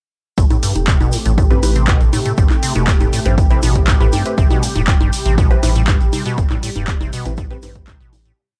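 Acid house at 120 BPM in A minor, raw and trippy, built on a punchy, up-front four-on-the-floor electronic kick and a tape-warm analog drum machine of closed and open hats, handclap backbeat and high congas, with a grainy hand-played shaker in the background, a deep, thick saturated sub bass in a dotted rhythm, a squelchy, resonant square-wave acid line with accents and slides whose 7-step loop drifts against the bar, a smooth, detuned sawtooth pad holding an Am7 chord with a moving notch, and muted, phased dub chord stabs that move one shape in parallel in syncopation from 1.5 to 7.7 seconds, all within a dry, gritty cassette-tape sound that fades out from 5.7 seconds.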